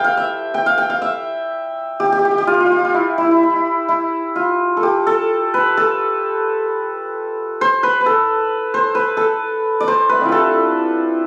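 A solo santur sits up front, its hammered strings shimmering and ringing across a range from A3 to G5 in this meditative, solemn Indian classical passage cut from a longer piece. The music moves in 5/4 with uneven beats at around 129 BPM and gradually speeds up over its 11.3 seconds. A phone captured it in a small room, and the moderate reverb adds a touch of space around the instrument.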